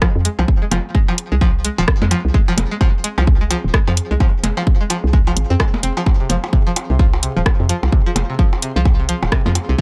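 Minimal techno with a quirky, hypnotic mood, this short cut from a longer piece rides a swung groove over a single F minor chord. An up-front electronic kick, layered and tape-warm with a small-room character, anchors the beat alongside a punchy analog drum machine supplying hi-hat and rim click. A hollow, knocking FM bass enters at 0.2 seconds, dark and bouncy with a fast attack and sidechain pumping, while overdriven percussion blips with digital delay sit low in the mix. The riff comes from a twangy, string-like resonator pluck, bright and vintage-sounding with a sawtooth edge, noise layer and filter sweep, warbling through chorus, phaser, digital delay and sidechain pumping. From 0.4 seconds a very quiet, ethereal pad of detuned saws and triangles adds a mellow, airy haze with slow attack, ensemble chorus and its own reverb, in an otherwise dry mix.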